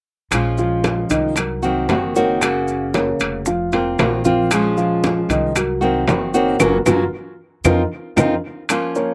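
Opening at 0.3 s with an up-front, bright, fingerpicked nylon-string guitar over a thumpy, woody pizzicato upright bass and a percussion bed of round low-tuned bongos, close claves, grainy maracas, ringing metal-shell timbales and very quiet thin-skinned congas, this danceable, sultry Cuban son and guajira at 115 BPM in Bb minor brings in a dark, boxy grand piano playing arpeggios from 0.6 s, cycling through Bbm7, Cm7b5, Gbmaj7 and F7sus4 in a dry outdoor sound before a band accent at 6.6 s and a drum fill at 7.7 s.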